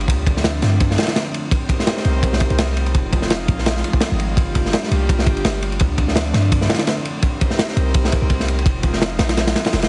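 Heavily compressed into a radio-like squeeze, with multiband compression, a top end that stops at 11.0 kHz and a studio reverb, this short cut from a longer drum and bass and jungle track feels frenetic and raw. A crunchy, saturated acoustic breakbeat kit drives it at 168 BPM in 4/4 with a 55% swing on the sixteenths. Its tight kick, medium-tuned snare and dark ride cymbal sit up front with a mid-forward, rolled-off tone. Underneath, a deep, boomy 808-style bass with a mellow, sine-like body and fast, decaying notes ranges between F1 and G2. An airy, breathy pad with a slow attack and long release holds soft chords from D3 to C5, coloured by chorus and vintage 12-bit sampler grit and sitting lower in the mix than the drums. The harmony cycles through Dm7, Cm7, Fm7 and Gm7, returning to Dm7 at 5.8 seconds.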